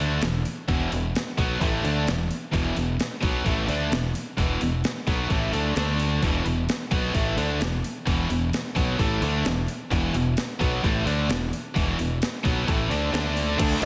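A cranked stack guitar sits in the background behind an up-front, high-gain guitar with slapback echo, both grinding out a menacing hard rock riff that moves between E5 and D5 power chords over a growly, punchy fingered bass. At 0.2 seconds a gritty, compressed sampler-style drum kit joins up front, with a thumpy kick, a high-tuned snare, hi-hat, ride and crash, all with a tape-warm character re-recorded in a large room. A double-tracked, overdriven guitar slips in at 13.6 seconds just before this aggressive excerpt is cut off, and a concert hall reverb gives the whole mix a big arena sound.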